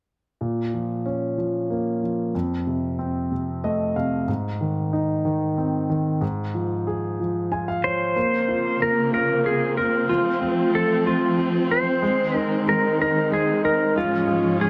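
Aching and melancholic, this slow pop piece in Bb minor moves at 62 BPM in a gentle 6/8, opening on an intimate, polished concert grand piano with audible action noise, deep bass and long sustain, adding brief fills of its own at 3.3 and 7.2 seconds. A clean, twangy lap steel guitar enters with the melody at 7.8 seconds, its slide and volume swells sitting up front, and a studio string section follows at 8.2 seconds with bowed, expressive sustained chords full of vibrato and portamento. A moderate plate reverb surrounds the whole in this excerpt cut from a longer piece.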